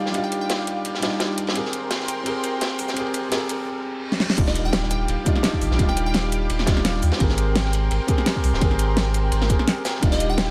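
A 170 BPM liquid drum and bass groove with a light 16th-note swing carries this dreamy, lush excerpt, where a crunchy, gritty breakbeat kit and an overdriven pop kit with a fat snare and metallic hats run from 0.1 seconds under an intimate concert grand piano with tape echo, a thick, airy unison pad with chorus, phaser and sidechain pumping, and a deep, round sub bass over Ebmaj9 and Abmaj9 chords, while a glassy wavetable pluck with chorus and digital delay flickers in briefly, a very quiet riser, reverse cymbal and impact lead a build-up into the drop at 4.4 seconds, and a punchy, overdriven electronic kick joins there until 10.1 seconds.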